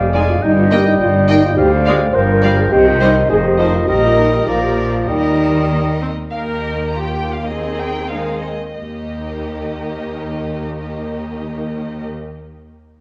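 Lively and spirited, this quick classical-period orchestral movement in Eb major moves in a straight 2/4 at around 91-105 BPM. A vibrato-rich violin section carries the melody with soft-attack portamento, while a second, close violin section, a mellow hollow flute, oboe and clarinet add second lines over a viola section and bassoon accompaniment, a dark, tight horn section holding sustained chords, and focused cello and double bass sections anchoring the bass. The winds and horns fall away at about 6 s, the music slows from 5.7 s to 8.8 s, and the strings carry on to the end of this cut, all bathed in a wet scoring-stage reverb and the worn, warbling pitch drift of old cassette tape.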